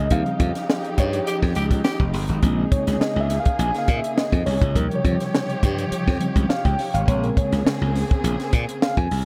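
A straight 4/4 funk groove at 103 BPM in Bb dorian sets a cool, funky mood in this short excerpt, where a compact, dry cocktail drum kit with a high-tuned snare and punchy kick sits up front beside a glassy, growly slap bass, while a mellow, reedy electric piano takes the solo with stabs through fast tremolo and tape echo over dark, lush bowed string chords, a raspy tenor saxophone line touches in at 1.3 seconds, and the band accents together until 2.4 seconds as the harmony alternates between Eb13 and Bbm9 in a studio reverb.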